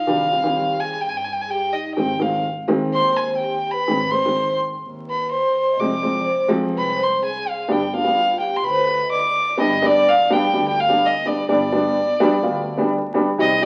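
A nasal, reedy violin with light vibrato and gut-string tone leads this soulful, festive klezmer cut at 126 BPM in G phrygian dominant, soloing up front over a worn, slightly detuned upright piano, a mellow vibraphone with fast motor vibrato that stops at 9.6 seconds, and a bowed double bass in the background, all in wet studio reverb with the crackle of a very old 78 rpm record.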